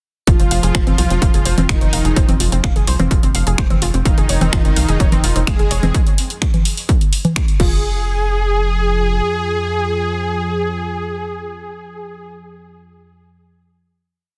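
A cinematic, dramatic melodic techno piece opens directly in a drop, with an overdriven, up-front four-on-the-floor kick and dry analog drum-machine hats, snaps, low congas and crash driving a tight sequenced sixteenth-note sawtooth bass. Above them a smooth, detuned supersaw plays a repeating riff in octaves with delay, while a warbling, lo-fi pluck runs a 6-step arpeggio loop that drifts against the bar through chorus and dub echo, and every part except the drums pumps to the sidechain. The drums drop out at 7.7 s, and a chorused analog drone with a moving notch carries on beneath the supersaw into the final hit at 7.8 s, all within a dense, heavily limited master.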